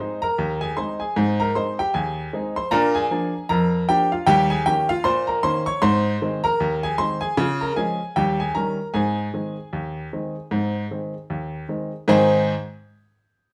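Set in a swung 2/4 at 77 BPM, with the sixteenths leaning into a light 58% swing, this jaunty, cheerful ragtime fragment is played on a solo upright piano in Ab major, tuned to A4 = 439 Hz. The piano sounds bright and woody, with a short sustain and audible action noise that gives it an intimate, polished presence, sitting up front in the sound. Across a range from Eb2 to Db6, the harmony moves from Ab through Bb7 and Eb7, settles back on Ab, then touches Db and Eb7 before resolving to Ab again at 8.9 seconds. A new section begins at 12.1 seconds, and the piano stops at 12.5 seconds. A fairly wet studio reverb places the room at a slight distance, framing the playing with a gentle ambience.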